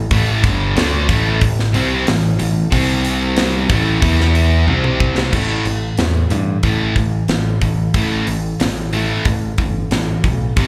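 Hard rock at 92 BPM, anthemic and swaggering, heard live through a club PA with little reverb: two overdriven, picked guitars share the riff, one sludgy and warm, the other tucked in the background with slapback echo, over a bright, direct, up-front picked bass and a tight, polished drum kit with bright cymbals and a tight kick, whose fill at 4.7 seconds leads into a new section at 5.3 seconds as power chords move around A, C and E.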